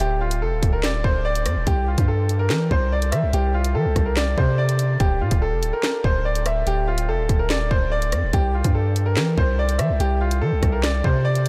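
Lightly reverberant and up-front, this ominous, menacing drill hip hop clip moves at 144 BPM in a half-time feel, with a brilliant, woody upright piano carrying the melody through a diffuse ambient delay over Dm and Cadd9, a chordless passage and a closing C, while a deep, long-sustained sine-toned 808-style bass and an electronic drum kit of hard-clipped kick, sharp snare, bright hi-hat, handclaps and rim click hold the menace through all 11.5 seconds.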